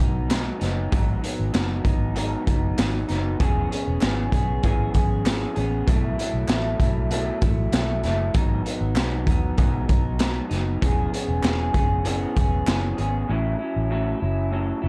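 Dreamy and sunny, this short indie and bedroom pop fragment moves at 97 BPM in a straight 4/4, centered on E major. An electric guitar played through a small old amp sits up front with a dark, slightly broken-up, lo-fi tone, bathed in lush chorus and vibrato as it carries the chords from G#m7 through E6 and B7sus4. Beneath it, a vintage muted fingered bass adds a round, foam-muted low end, while a raw garage drum kit of kick, snare and hi-hat brings a gritty, saturated punch with a boomy kick and a pumping small-room character. A group handclap, crisp and close, sits in the background from 0.3 seconds until 12.8 seconds. The drums drop out at 13.1 seconds, just before the harmony shifts to A6 at 13.3 seconds, leaving guitar and bass to finish the passage. Light reverb and a dark production give the whole a hazy, intimate glow.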